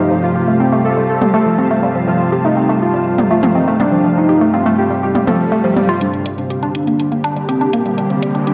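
A straight 4/4 pulse at 122 BPM drives this dark, dramatic melodic techno excerpt, where a woody, wave-folded pluck spins filter-swept arpeggios up front, a fat, detuned analog lead sings a mellow, vibrato-tinged melody through tape echo, an evolving wavetable pad holds morphing chords over Fadd9/G, and a blurred granular cloud pad drifts in the background, before a layered house kit with metallic hats and toms enters at 1.2 seconds and a background swell and riser from 5.2 seconds lead into a build-up on Gm at 6.0 seconds, where the ambient pad's filter sweeps too, all bathed in a dreamy, reverb-soaked hall.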